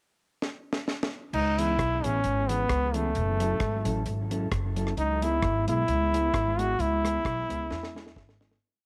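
Mischievous and driving, this short ska piece in C# minor at 132 BPM opens with a fill from a deep reggae drum kit, dry with a high-tuned snare and a side-stick backbeat. A brilliant, punchy trombone with vibrato then states motif-based call phrases up front over a woody pizzicato upright bass walking with slides and a mellow, clean electric guitar chopping off-beats through spring reverb and tape echo. The harmony moves from C#m7 to F#m7 and back before a final drum fill and a fade-out from 6.8 seconds.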